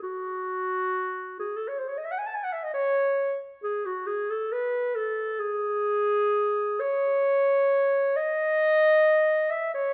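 A dark, roomy clarinet plays alone for the whole 9.9 seconds of this classical fragment, cut from a longer piece, with a free, expressive line that ranges from F#4 to A5. Its mournful, meditative character comes through in the rubato phrasing, as the uneven beats stretch and pull against a gentle three-beat metre. The instrument sits up front in a recital hall whose moderate reverb lends the sound a lingering, spacious glow.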